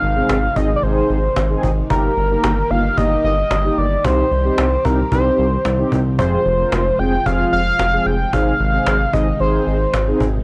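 Synth-pop at 112 BPM in a bright, nostalgic mood, this short cut from a longer piece sets a bold, retro octave-doubled sawtooth lead with chorus and vibrato up front over a smooth, saturated synth bass, a round, brassy synth accompaniment that enters at 0.2 seconds, a string machine's soft-attack cello pad in the background, a woody, band-limited cajon with faint snares, and a barely audible electronic downlifter in the first 1.9 seconds, all moving through Ab, Eb/G, Cm and Fm in a dry, gritty hardware recording.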